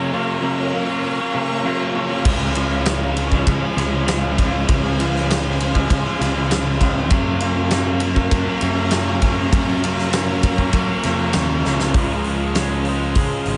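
A big, punchy rock drum kit with bright cymbals and a growly, fuzz-drenched electric bass crash in at 2.3 seconds, driving this blissful, hazy shoegaze and dream pop passage at 99 BPM in Db major, cut from a longer piece. Beneath them, a biting overdriven guitar with lush chorus and a twangy, compressed electric guitar with reverse reverb play riffs, while a boxy, fingerpicked twelve-string acoustic guitar with analog chorus and delay traces arpeggios and an ethereal, detuned pad with phaser glimmers softly behind. Huge ambient reverb bathes the whole piece as the chords move from Gbmaj7 to Dbmaj7, and a drum fill at 11.7 seconds leads into a new section at 12.0 seconds.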